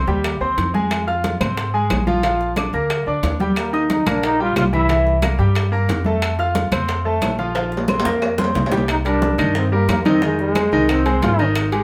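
A clear trombone with light vibrato and scooped notes sings short vintage-tinged solo phrases at 3.6 and again from 8.9 seconds over a sunny, festive 180 BPM salsa, where a bright, brilliant concert grand piano with deep bass plays up front alongside a woody pizzicato upright bass, while ringing metal-shell timbales, soft-handed congas, tight high-tuned bongos and background claves drive the groove, a drum fill leads into the closing section, and a wet studio reverb gives the whole band a live, one-room feel.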